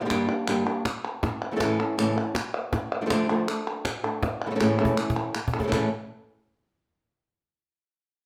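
Set in a large studio with moderate reverb, this brief fragment of a longer flamenco piece sounds both fiery and mournful. A dark, fingerpicked acoustic guitar sits up front and carries the melody in A phrygian dominant at a brisk 160 BPM in straight 4/4, moving through Gm, A, Dm and back to A. Beneath it, a woody cajon with faint snares plays close and dry, while crisp palmas hand claps, also placed forward, ring out with a live-room quality. A drum fill arrives at 4.6 seconds and leads into a closing passage where the chords fall away at 5.7 seconds. The guitar holds on just a moment longer, ending at 5.9 seconds.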